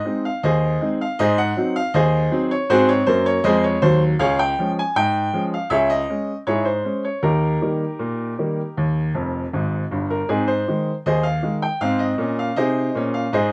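A dark, warm production sets a bright, woody upright piano up front in a moderate club reverb, giving this short cut from a longer ragtime piece a cheerful, playful air. The solo piano moves at 79 BPM in 2/4 with a straight feel in Ab major, ranging from F1 to Ab5 through a progression from Ab and Ab7 to Db, Dbm and Eb before returning to Ab at 10.3 seconds. A brief piano fill stands out from 9.2 to 10.3 seconds, leading back home.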